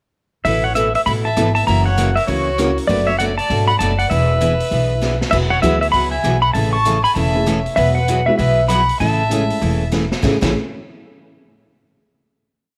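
A twangy, fingerpicked pedal steel opens this cheerful, down-home western swing piece with a slide-laced, motif-based melody full of volume swells, joined at once by a smooth fiddle harmony line mostly in thirds and touched with tape echo, a bright dreadnought acoustic guitar picking four to the bar, a woody pizzicato upright bass walking up through a two-beat root-and-fifth pattern, and a distant, roomy big-band drum kit keeping time on the hi-hat with fills at 5.0 and 9.9 seconds, while a mellow, slightly detuned upright piano adds syncopated comping in the background from 1.4 seconds before everything settles on a final chord at 10.2 seconds in a small, lightly reverberant room.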